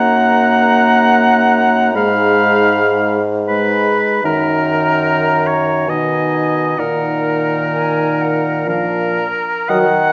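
Classical wind quintet music in a slow, tender romantic movement, moving with a rubato three-beat lilt through this roughly ten-second passage cut from a longer piece. The warm oboe, close and up front with light vibrato, carries a second line beneath the pure, straight-toned flute melody, which is tongued and set in the background, while the bassoon holds the bass up front with a touch of vibrato. A dark clarinet and a mellow, soft-attacked French horn supply distant, roomy accompaniment, and the ensemble sits in the wet reverb of a recital hall.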